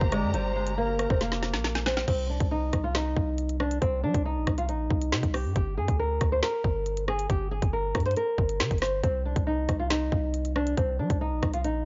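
A half-time drill groove at 138 BPM drives this dark, menacing hip hop excerpt, its up-front electronic kit pairing a hard-clipped kick and woody snare with crisp hats, finger snaps, rim clicks and a crash, with a fill from 1.2 to 2.1 seconds. A deep, sine-toned 808 bass with a fast attack and long decay sits beneath a small, fingerpicked nylon-string guitar melody that runs through a low-pass filter and analog delay, while a smooth, detuned gliding lead with chorus, a very quiet ringing harp and lush bowed strings with vibrato are all gone within the first 2.1 seconds. The harmony moves between Gm and Cm, tuned to A at 437 Hz, and the gritty cassette-tape sound is dry with a small room reverb.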